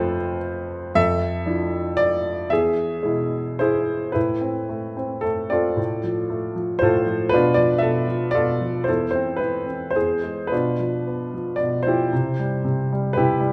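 A clear, intimate, natural grand piano, up front with its action noise audible, plays alone in this lyrical, bittersweet classical fragment in 3/4 with a flexible rubato feel, ranging from low E2 to E5 over cool harmonies that move from F and E into A minor, a half-diminished colour and a closing Cmaj7 at 12.1 seconds, all set in the moderate reverb of a church or concert hall.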